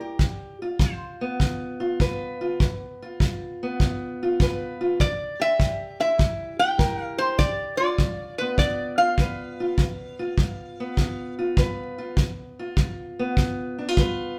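A swung 4/4 groove at 100 BPM carries this gritty, soulful acoustic country blues in G mixolydian, cut from a longer piece. A punchy kick drum, played with brushes, sits up front from 0.2 seconds to 14.2 seconds and gives the band its pulse. Beneath it, a dark, boxy parlour-style steel-string acoustic guitar is fingerpicked through the whole 14.4 seconds, supplying the accompaniment over a G7 to C7 and back to G7 progression. On top, a metal-body resonator slide guitar, played with fingerpicks, sings the melody with a metallic, nasal bite, ringing out until 11.3 seconds. The trio sounds like a band playing live together in one room, with light reverb keeping the up-front parts close and intimate.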